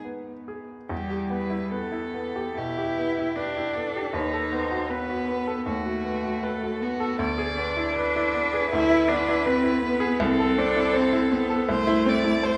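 A single bowed violin carries the melody from 0.9 s with a rich, even tone and vibrato, its line moving smoothly through a narrow upper register. Beneath it, one cello sings a second line in a focused, up-front voice with vibrato and a smoothly rounded top. A baby grand piano supplies the accompaniment from the very start, sounding brilliant and natural and sitting close to the listener across a broad range that reaches deep into the bass. This slow, romantic piano trio movement has a melancholic, solemn mood, flowing in a flexible rubato over harmonies that pass from Em through B7/D#, E7/D and Am/C. A wet recital hall reverb surrounds the ensemble, and the passage, cut from a longer piece, runs to 12.6 s.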